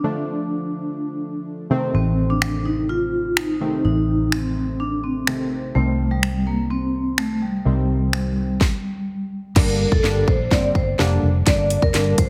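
A straight 4/4 dance-pop groove at 126 BPM in G minor carries a bittersweet yet confident mood, with a dark, ringing vibraphone melody soaked in dub echo floating over detuned sawtooth analog keys that pump with sidechain and shimmer with chorus and a filter sweep. A round, foam-muted electric bass and a punchy house kit with cracking snare, metallic hats, finger snaps and crash join within the first few seconds, the kit entering at 2.4 seconds. After a stop from 8.6 seconds, a drum-fill build-up takes over from 9.6 seconds to the end of this cut, all set in a moderate hall reverb with a heavily compressed, radio-like finish.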